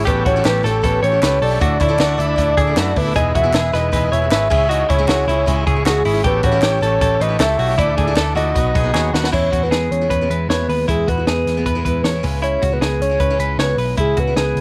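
A soft, round synth lead with chorus carries the melody from the start over buzzy, heavily vibrato-laden overdriven combo organ, a shimmering boxy twelve-string acoustic guitar in the background, bright compressed clean electric guitar arpeggios and a dark, foam-muted picked bass up front, while a dry compact cocktail kit with a punchy kick and high-tuned snare drives this nostalgic, youthful jangly indie pop at 155 BPM in E major, joined by very quiet hollow handclaps until 9.0 s, with the organ dropping out at 9.3 s after a drum fill.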